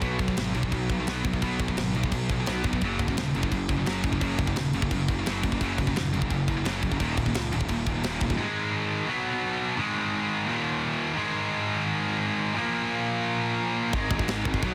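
Heavy metal at 173 BPM in a straight 4/4, heavy and dark in mood, cut from a longer piece and built on a scooped, high-gain, double-tracked guitar riff that runs the whole 14.7 seconds over power chords moving from B5 through Gb5, Eb5, Ab5 and Bb5. A growly, fuzz-driven picked bass and a tight, up-front acoustic drum kit with bright cymbals, a medium-tuned snare and soft clipping on the kick and snare drive the opening section, then drop out at 8.4 seconds so the guitar carries the second section alone until both return at 13.9 seconds. The sound is dry and dense, with a heavily limited modern master.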